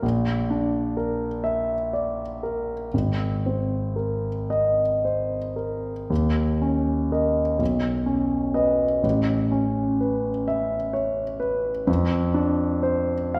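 Bathed in a lush recital-hall reverb and heard from further back in the room, this dreamy, serene excerpt of impressionist classical solo piano drifts in a rubato 6/8 at roughly 37-43 dotted-quarter beats per minute, its intimate concert grand spanning Ab1 to F5 with deep bass, long sustain and audible action noise as it moves through chords from Bb and Abadd9 to Badd9, Aadd9 and a closing F5 at 11.9 seconds.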